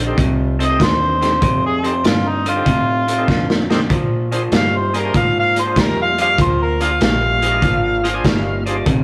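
A rough rehearsal-room recording in a moderately reverberant stone room gives this short cut from a longer electric blues shuffle a gritty, swaggering feel at 97 BPM in 4/4, swung on the eighths over F7 moving to Bb7 at 3.9 seconds. A crunchy breakbeat kit sits up front with a saturated, rolled-off top, a punchy kick, a medium-tuned snare and hi-hat, and it drops in a fill at 3.3 seconds. Underneath, a vintage foam-muted fingered electric bass stays round and dark, while an electric guitar through a small old amp plays a picked, slightly broken-up, lo-fi riff in its low register. The mellow harmonica carries the melody as a jazz-style solo, overdriven and sent through tape echo, with light vibrato and scooped notes that feel both up front and distant in the room. In the background, an overdriven tonewheel organ with key click and a slow rotary speaker adds thick, full accompaniment and plays a fill at 7.6 seconds.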